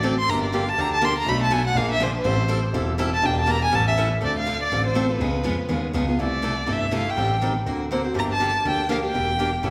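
A brisk swing feel at 244 BPM in 4/4 drives this short cut from a longer piece of acoustic string swing in the gypsy jazz manner, set in D minor with a virtuosic yet bittersweet mood. The violin carries the melody with a warm, close, bowed tone, its vibrato, soft attack and portamento making the solo in the opening 4.2 seconds especially expressive. Underneath, a picked steel-string acoustic guitar with a bright, parlour-sized body and fresh strings supplies the accompaniment, with audible finger squeak. A dark, mellow concert grand piano holds down the bass in a deep register with a slightly boxy quality. The chords move through jazzy colours such as Gm7, Em7b5, C#9 and Daug7, and the whole performance sits in a reverberant recital hall that gives it a church-like sense of space.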